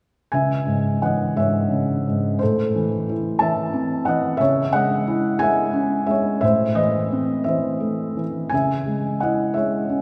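The sound is intimate and up front yet bathed in a wet church reverb that lingers for about 2.8 seconds, giving the close piano a long, hallowed tail. This is a lyrical classical piece for solo felt-muted upright piano, melancholic and wistful in mood, cut from a longer work. It moves slowly at 59 BPM in a 6/8 lilt, the beats uneven and shaped with rubato, in C# harmonic minor. The piano's tone is soft and mellow, muffled by the felt, and it spans from C#2 up to A5, playing from 0.3 to 10.0 seconds. The harmony rocks between C#m and Am, returning to C#m at 8.5 seconds, which lends the passage a wistful sadness.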